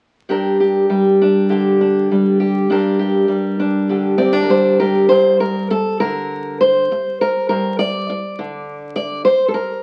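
Reflective and melancholic, this short folk excerpt features a solo fingerpicked steel-string acoustic guitar, played with a loose, rubato feel and sitting up front with bright, fresh-stringed clarity and audible finger squeak. The guitar plays from 0.3 to 9.8 seconds, opening on a G minor chord and moving into a second section at 5.1 seconds. A moderate studio reverb surrounds it, and the sound carries the crackle of a very old 78 rpm record.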